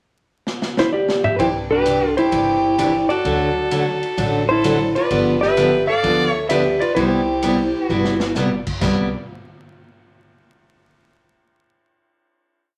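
A clean lap steel guitar carries the melody up front in this swinging, playful western swing piece. Its dark, compressed slide tone is played with fingerpicks and built from song-like motifs partly doubled in sixths. It enters at 0.8 seconds during a pickup bar that opens on a rootless Em7, with the drum kit already playing a fill. A clear, earthy fiddle, one distant bowed player with light vibrato, adds a harmony line mostly in thirds. Alongside it, a bright picked acoustic guitar with audible finger squeaks keeps four to the bar up front, and a woody, thumpy upright bass plays a pizzicato two-beat root-and-fifth part. The big-band kit swings behind them with an airy, polished sound, a punchy kick and a ride cymbal pattern, dropping in a second fill near 7.9 seconds as the changes move from Cadd9 through D and G7 to Cmaj7, before a final chord rings from 8.8 seconds, all set in a wet small room reverb with a layer of vinyl crackle.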